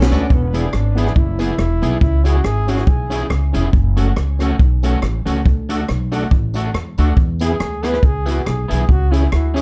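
A drum fill kicks off this upbeat, cheerful ska excerpt, with woody, growly upright bass and a punchy, up-front swinging kit carrying a lightly swung groove under a chord cycle of E, C#m, F#m and D. A clear, scooped trombone melody with light vibrato and dub echo sings at the start, drops out at 3.3 seconds and returns at 7.4 seconds, while twangy guitar at the edge of break-up, reedy organ stabs through a slow rotary speaker with key click, and a jingly tambourine in the background fill out the arrangement. The production is dark and lightly reverberant.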